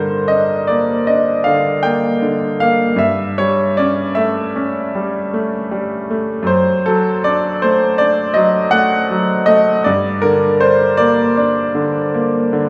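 A rubato 9/8 pulse carries this wistful, melancholic romantic nocturne, where a solo grand piano with a brilliant, smooth, vintage tone and long sustain sits up front yet is bathed in a wet recital hall reverb heard from further back in the room, across a short 12.7-second passage cut from a longer piece.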